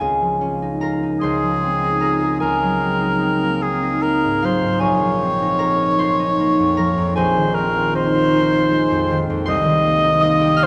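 In a rubato 6/8 lilt of 51 dotted-quarter beats per minute, this pastoral, dreamy impressionist duo opens with a fingerpicked concert harp, ringing and up front, spanning a broad range over chords of Db69, Fm7/Db, Ab9/Db, Bbm11 and Cm7. At 1.2 seconds a mellow cor anglais enters as the solo melody, up front with a light vibrato and classical phrasing, moving within a narrow compass from Ab4 to Eb5. Both instruments sit in a vast, echoing cathedral space whose long, wet reverb lends this fragment of a longer piece a floating, hazy glow.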